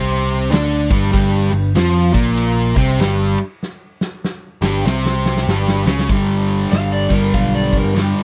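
Gritty and swaggering, this short cut from a longer blues rock and southern rock power-trio piece struts at 97 BPM in 4/4 with a swung eighth-note feel, as a crunchy, double-tracked overdriven guitar riff sits up front over a G5 chord, backed by amped, picked electric bass and a huge acoustic arena drum kit with a fat snare and punchy kick. The drums take a fill from 3.6 seconds, and at 6.1 seconds the harmony moves to G as an overdriven slide guitar enters at 6.7 seconds for a brief, fingered solo in a higher register. The sound is dry and close, like a 1970s studio recording.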